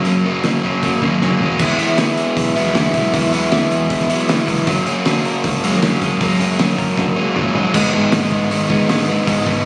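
Indie rock in a straight 4/4, this jangly, carefree passage is cut from a longer piece. An overdriven electric guitar sits up front with a warm, picked riff, while a very quiet clean electric guitar adds a bright, twangy picked riff alongside it. A growling fingered electric bass, overdriven and direct and amped, stays in the background. The cloth-damped drum kit sounds thuddy, lo-fi and muffled, with a fat snare, tight kick, dark cymbals and a gritty, rolled-off top, and it plays fills at 1.2 and 7.0 seconds. The whole band was captured on a phone in the room, with a light club reverb around it.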